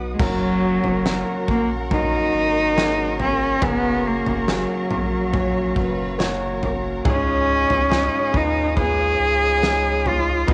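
Tender and hopeful, this slow pop ballad at 70 BPM in F# major moves from F# to C#add9, led by an up-front bowed cello melody with vibrato and a smooth top, over a clear, intimate concert grand piano whose action noise is audible and a round, deep sine sub bass. A lush, distant string section holds sustained chords in the background while a very quiet violin section plays a smooth second line and a full-bodied jumbo acoustic guitar picks soft arpeggios. A loose indie drum kit with a fat snare, punchy kick and dark cymbals enters at 0.2 seconds, and the cassette home recording, with its light reverb, gives this excerpt a dusky, tape-softened character.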